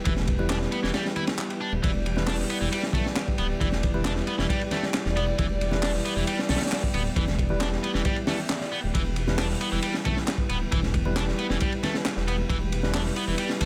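A funky, energetic breakbeat excerpt opens at once on a single E minor chord, with hushed, softly bowed strings sustaining in the background under sidechain pumping, a bright overdriven guitar riff and barky, gritty electric piano stabs, both trailing dub echo. A menacing detuned saw bass and a crunchy, up-front breakbeat kit with a punchy kick and rolled-off top drive the groove, while very quiet congas and tape-warm electronic handclaps sit further back. A faint electronic swell surfaces briefly at 8.2 seconds, all within a light reverb.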